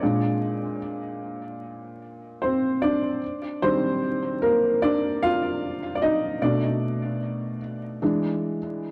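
A dark production with vinyl crackle and light reverb frames this brief, melancholic hip hop fragment, cut from a longer piece. A felt-muted upright piano plays alone for all 8.9 seconds, its boxy, intimate tone sitting up front with audible action noise and short sustain, softened further by a low-pass filter and tape echo. A swung sixteenth-note feel gives a reflective sway to the chords as they move from Bb7 through Ebmaj7 and Bm7 to E7.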